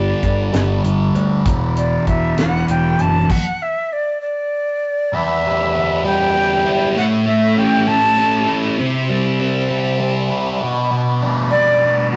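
Heard through a rough rehearsal-room recording with a wet stone-room reverb and a dulled top end, this dark, hypnotic psychedelic rock fragment in 6/8 sets a thick, double-tracked fuzz guitar riff with phaser up front beside a breathy, reedy jazz flute melody, while a buzzy combo organ holds chords in the background, a growly overdriven bass plays until 3.2 seconds, a dry, fat-snared drum kit drops out at 3.4 seconds, and the flute returns briefly at 11.5 seconds.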